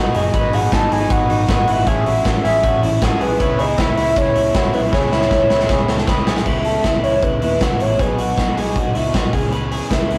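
A rough rehearsal-room recording with saturation, vinyl crackle and a moderate studio reverb frames this restless, bittersweet stretch of jangly indie pop, cut from a longer piece and moving at 157 BPM in a straight 4/4 in C# minor. A hollow, woody clarinet-like synth lead carries the melody with chorus, vibrato and slapback echo, joined by a very quiet, clear trumpet second line that drops out at 6.2 seconds. Underneath, a twangy electric guitar through a small old amp picks lo-fi arpeggios, an overdriven, compressed electric guitar fills out the accompaniment, and a buzzy combo organ sits in the background with spring reverb. A dark, round, foam-muted vintage bass anchors the low end, while a big acoustic rock kit with bright cymbals and a punchy kick sits up front. The harmony moves through G#m7, Amaj7 and C#m7, and a drum fill from 4.9 seconds leads into a second section at 6.5 seconds that turns to B before settling back on C#m7.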